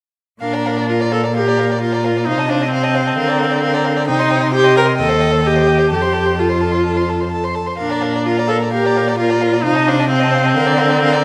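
Lively and graceful, this quick classical-period movement for string quartet moves at 131 BPM in Bb major, with a dark, expressive first violin singing the melody with portamento and a soft attack over a rich, even second violin line, a clear, focused viola accompaniment set up front, and a smooth cello bass, all bowed with vibrato and heard together from 0.4 to 11.2 seconds in a recital hall's wet reverb, cut from a longer piece.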